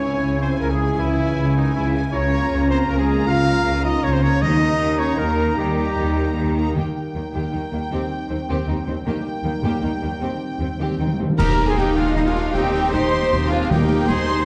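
Cinematic heroic adventure film score in a brisk 157 BPM triple metre, adventurous and triumphant, settling into Eb major from 6.8 s. A clear, intense violin section carries the melody over warm second violins, a bright oboe, a mellow clarinet, a pure silver flute and bright trumpet stabs, with rich violas, rich cellos and an up-front double bass section beneath, dark French horn chords, ringing harp arpeggios, and round soft-mallet timpani entering at 4.4 s. The woodwinds and trumpet drop out and return at 11.4 s, when bright clash cymbals, bass drum and snare mark a band accent after a timpani fill, all in a dark, reverberant recital-hall sound.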